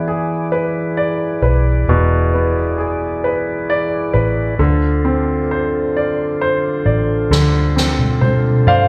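A slow, lilting 6/8 at 44 BPM carries this tender, romantic pop ballad excerpt. A clear, polished concert grand piano plays the accompaniment over a mellow, flute-like tonewheel organ holding sustained chords through a slow rotary speaker, while a dark, round, foam-muted electric bass anchors the low end as the harmony moves from E7 to a rootless G7sus4 at 4.6 seconds. A soft-mallet acoustic drum kit enters at 7.3 seconds with a fill on snare and toms, and the piano adds its own fill at 8.7 seconds, all heard as a band playing together in a large studio room.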